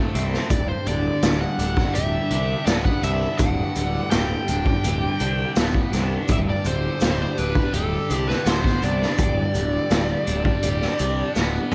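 A straight 4/4 pulse at 83 BPM drives this hypnotic, trippy stretch of psychedelic rock, cut from a longer piece and anchored by a raw garage drum kit of hi-hat, boomy kick, medium-tuned snare and toms that sits up front with a saturated, gritty, rolled-off character and closes on a fill from 11.4 seconds. Beneath it, a fuzz picked electric bass holds the low end with a round, punchy, dark overdriven tone, while a grainy tube shaker ticks along in the background. A crunchy, double-tracked overdriven guitar plays a bright riff through a phaser, and from 0.5 seconds a fuzz lead guitar carries the melody with a dark distorted edge and slapback echo. Very quiet underneath, a phased string machine holds sustained chords with a swirling, vintage sawtooth sound, slow attack and ensemble chorus. The harmony rests on G/D, and the whole piece sits in light small-room ambience.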